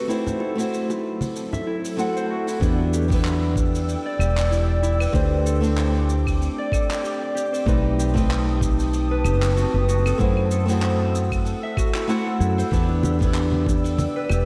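A relaxed, smooth sunset chillout excerpt in E minor moves at 95 BPM in 4/4 with swung sixteenths, a brushed jazz kit with claves, handclaps, hi-hat and shaker ticking softly under bright, dry congas and bongos that sound only briefly near the start and again near the end, while a gritty, thumpy electronic kick and a dark, round fretless bass arrive together at 2.6 seconds, the bass sitting punchy and up front. A bright, fingerpicked flamenco guitar carries the accompaniment through tape echo, slapback and shimmer reverb, a ringing concert harp plays arpeggios that open under a filter sweep, and an ethereal, detuned sawtooth pad holds slow-blooming chords thickened by ensemble chorus. The chords drift from F#m7b5 through Em7, D7sus4 and B7b9b13, all set in a lush hall reverb with a big arena sound.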